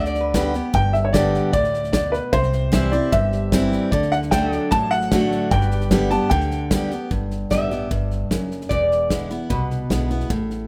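Sunny and easygoing, this honky-tonk and classic country clip in G major moves at 151 BPM with a straight 4/4 feel, as a clear, woody upright piano carries the melody up front over a bright, full-bodied picked dreadnought acoustic guitar, a growly pizzicato upright bass, a punchy small-room drum kit and a twangy pedal steel with lush chorus in the background, until the piano stops at 6.9 seconds and a nasal, metallic lap resonator guitar, heard briefly at the very start, returns with a steel bar solo from 7.1 seconds in a rough home demo mix with light studio reverb.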